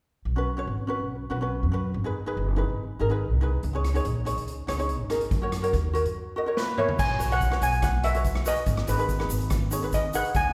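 Cut from a longer piece, this calypso passage sits in a wet, reverberant recital hall that gives every note a spacious church-like tail. Its bouncy, carefree mood rests on the opening pair: a woody, pizzicato upright bass with steel strings and a light, fingerpicked acoustic ukulele, both up front, moving through Bsus2, G#m, C#sus2 and F#. A street-band drum kit arrives at 3.6 seconds with a polished, big-room sound, its boomy kick, medium-tuned snare, rim clicks, toms, hi-hat and dark cymbals all placed up front. At 6.6 seconds a drum fill coincides with the entry of the lead steel pan, metallic and shimmering under hard rubber sticks and carrying the bright, airy melody up front. From 7.0 seconds a grainy egg shaker adds texture in the background as the chords start their cycle again.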